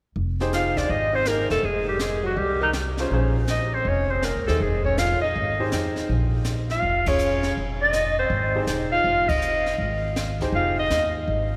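Small-group swing and bop jazz with a smoky, cool mood, set in a long, cathedral-like reverb. A forceful, punchy clarinet carries the melody up front with light vibrato, while a mellow, distant tenor saxophone plays a second line beneath it and an intimate baby grand piano accompanies with audible action noise. A woody, thumpy pizzicato upright bass and a brushed drum kit with dark cymbals and a high-tuned snare underpin the swing, and the band hits accents at 7.0 and 9.2 seconds.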